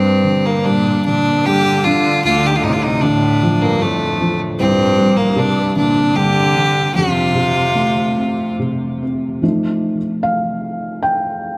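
Mournful and longing, this slow Celtic folk air in 3/4 drifts at a rubato 75 BPM through a cathedral's long, wet reverb, with a biting, up-front solo fiddle carrying the melody over a focused, distant bowed cello line and a soft, felt-muted upright piano whose dark, intimate tone and audible action noise sit close; the fiddle and cello fall away at 8.6 seconds, leaving the piano alone from 9.4 seconds until this fragment of a longer piece cuts off.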